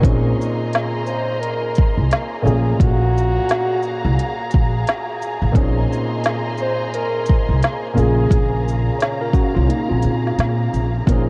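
Reflective and hazy, this lo-fi hip hop excerpt moves at 87 BPM in Bb minor with a swung 16th-note feel, its chords drifting from Bbm11 to Gbmaj9/Bb and back. A dark, mellow upright piano with a vintage cassette-tape grain carries the accompaniment under a soft-attacked, bowed string section playing sul tasto sustained chords, while a growly, thumpy pizzicato upright bass sits up front. The organic electronic drum kit pairs a deep kick and woody snare with smooth hi-hats and shaker, sounding as if re-recorded in a small room, and the kick drops out at 9.7 seconds. A breathy, close-miked flugelhorn with light vibrato takes the jazz-style melody from 0.7 seconds, colored by analog delay, and near its close a clean tine electric piano adds a brief second line through its built-in speakers, also with analog delay. The dreamy mix is soaked in a huge ambient reverb and rolled off at the top by cassette tape.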